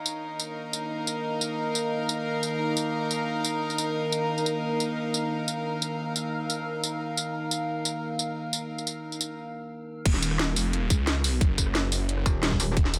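Dark technical drum and bass at 177 BPM, this tense, mechanical passage cut from a longer piece opens with an eerie, inharmonic FM drone holding sustained chords under a filter sweep, its warbling chorus and phaser sitting over a floating, sul tasto string section, both pumping against the sidechain, while a layered drum kit with a cracking snare, metallic hats, rim clicks, tambourine and crash cymbal drives along up front in a lush hall. After a brief break at 9.4 seconds, the drop lands at 10.1 seconds with a tight electronic kick and a thick, swirling, detuned saw bass saturated with overdrive and phaser. A bright, aggressive FM wobble bass flashes in on a low Eb at 12.3 seconds.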